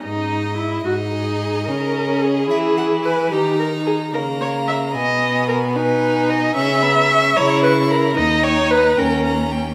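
In a 6/8 with a straight feel, this quick classical-period string quartet movement, cut from a longer piece, sounds restless and urgent. Two clear, bowed violins carry the parts: the first sings the focused, close-sounding melody with vibrato, while the second, more distant, enters at 0.9 s with a lower supporting line. Underneath, a rich, expressive viola sits up front with soft attacks and portamento, and an intense cello with a smooth top anchors the bass, all bathed in the wet reverb of a recital hall.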